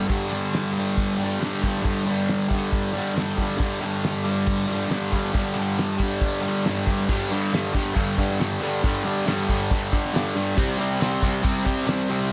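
A straight 4/4 at 137 BPM carries this rowdy, swaggering garage rock excerpt, where an up-front, double-tracked fuzz guitar riff grinds between G5 and C5 chords, a cloth-damped drum kit thuds beneath with a fat snare, tight kick and dark cymbals, and a grainy egg shaker rattles in the background until 7.0 seconds, all in a small, moderately reverberant room.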